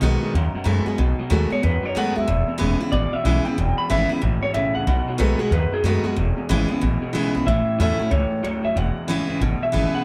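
Rockabilly excerpt, upbeat and retro with a swung feel, where a bright, twangy electric guitar through a small old amp carries the melody with tape echo and a clean solo until 7.5 seconds, a second slightly broken-up amp guitar plays a low riff bathed in spring reverb, a full-bodied dreadnought acoustic guitar picks the accompaniment up front, and a thumpy, woody upright bass drives the bottom end, moving from B7 and E changes to A before resolving on E.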